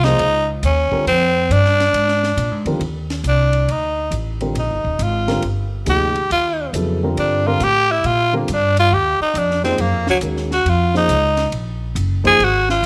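A swung 4/4 groove at 138 BPM drives this short modal jazz passage in Eb major, open and spiritual in mood. A dry, compact cocktail kit with dusky cymbals, a high-tuned snare and a punchy kick sits beneath a woody, up-front pizzicato upright bass on steel strings, while a dark, mellow baby grand piano with long sustain moves through Dbmaj9, Bb13, Ebmaj9 and Gbmaj9 before dropping out at 12.4 s. The growling tenor saxophone, bright, raspy and gritty yet soft in attack, stays out front and takes a solo from 2.8 s, all set in light reverb with a small-room ambience.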